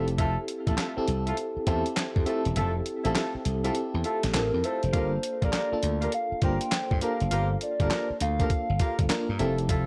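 Punchy, up-front slap bass and a gritty, compressed sampler-style drum kit with a thumpy kick, fat snare, handclaps and hi-hat drive this confident new jack swing excerpt in G dorian at 101 BPM, swung on the sixteenths, with the kick dropping out from 2.6 to 4.9 seconds. An FM electric piano with tremolo and a mellow horn section playing jazz-style stabs with tape echo fill in the harmony as it moves from Fmaj7 to Gm7 at 4.9 seconds. A hollow, woody clarinet-like synth lead with chorus and vibrato carries the melody from 4.4 to 9.1 seconds, all under a light reverb.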